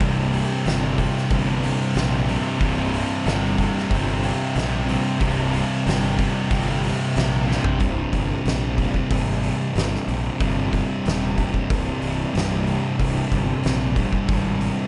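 In a straight 4/4 at 92 BPM, this heavy, brooding stoner and doom metal excerpt is driven by an oversized, low-tuned acoustic drum kit up front with a fat snare, boomy kick, hi-hat and toms in a pumping stone room, a growly, punchy fuzz-overdriven fingered bass, and two thick fuzz guitars picking riffs in the background, while a bright, double-tracked high-gain guitar plays a riff until a drum fill at 7.5 seconds leads into the second section at 7.8 seconds, all over a very quiet, swarming, detuned drone of sustained chords in a dark production with little reverb.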